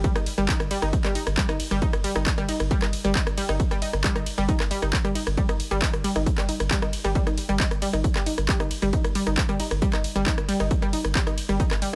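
A driving, straight 4/4 pulse at 135 BPM anchors this dark, peak-time techno excerpt, with a heavy, overdriven electronic kick drum leading the mix. Around it, a layered, up-front techno kit adds handclaps, hi-hat, ride cymbal and rim click, all given an overdriven edge, with the hats and cymbals pumping against the sidechain. Underneath sits a deep, thick sub bass holding on G1, its triangle tone saturated through tube warmth, sharpened by a fast attack and rounded off by a low-pass filter while it pumps in time. On top, a bright, detuned sawtooth pluck plays a riff between G3 and Eb4, its round, decaying notes thickened by chorus and tube saturation, echoed by a digital delay and pumping like the bass. All four parts play together from the start through roughly 12 seconds, in a dry mix with little reverb.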